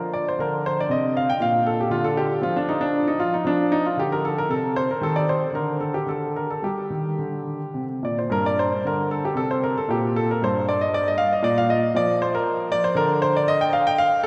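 A solo concert grand piano, up front with a natural tone and deep bass, plays a solemn, introspective baroque-style suite movement in a flexible, rubato triple time, its opening phrase returning at 8.3 seconds before this brief passage cut from a longer piece ends at 14.3 seconds, all set in a long, wet church reverb.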